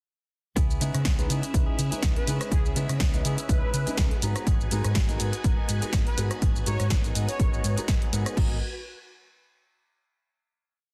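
A dry, dense and heavily limited mix carries this groovy, nostalgic filtered disco house piece in G# minor at 123 BPM, swung on the sixteenths and moving from C#m7 to G#m7 before a final chord rings out from 8.4 seconds. A punchy, tape-tinged four-on-the-floor electronic kick sits up front beside an analog drum machine's hats, shaker, rim, snare backbeat and crash. Around them, a round hollow-body fingered bass jumps octaves, a clean direct-recorded electric guitar strums sixteenth-note upper chord shapes, a mellow grand piano adds phased, rootless dotted-rhythm chords, and a swirling, bright string machine pad sustains in the background, each pumping against the kick, while from 2.2 seconds a fat, detuned analog synth brass carries a warbling, chorused and delayed melody with vibrato and a filter sweep.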